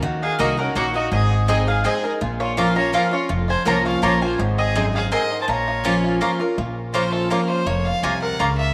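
A straight feel in three carries this short bluegrass excerpt, haunting and lonesome in mood. Up front, a bright, full-bodied dreadnought guitar with fresh strings picks the accompaniment over a thumpy, woody upright bass played pizzicato. A mandolin with doubled strings carries the melody until 6.2 seconds, and a twangy, percussive banjo played with fingerpicks, set back in the mix, shares the tune; both carry a slapback echo. A second mandolin adds picked stabs, and a clear, intense fiddle with light vibrato traces a second line before taking a solo from 6.6 seconds. The chords move through Ebm, Ab and Bbm, and a moderate plate reverb gives the ensemble a lingering tail.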